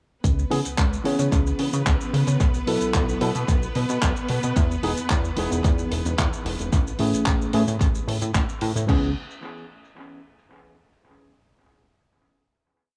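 An echo-heavy mix with light, small-room reverb gives this short nu-disco piece a cosmic, sensual air, moving at 111 BPM in a straight 4/4 in C# minor. A punchy electronic kick, layered and tape-warm, drives a four-on-the-floor pulse. Alongside it, a damped 70s drum kit adds a dry, dark disco backbeat of handclaps, closed and half-open hi-hats, shaker and crash, touched by analog delay. A glossy, chorused synth bass with a fast filter pluck jumps between octaves, while a clean tine electric piano, entering at 0.5 seconds, plays syncopated chord stabs through its own built-in speakers with analog delay trailing behind. Over them, a rich studio string section holds bowed chords with vibrato and a soft attack, pumping with sidechain compression and sustaining a high note. The whole thing is a single drop cycling through C#m7, B7sus4, Emaj7 and Amaj7, landing on a final C#m7 chord at 8.9 seconds.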